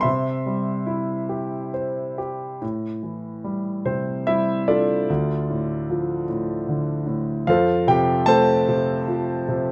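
Heard close and up front in light reverb, a warm grand piano plays alone through this 9.7-second fragment of a longer lyrical classical piece, in A minor and tuned to A4 = 441 Hz. The mood is dark and wistful, moving in 3/4 with a rubato feel at roughly 66-77 BPM, and the playing spans D2 to C6. Harmonies pass from C to Am7 at 2.6 seconds, where a new section begins, then on through Dm and Fadd9.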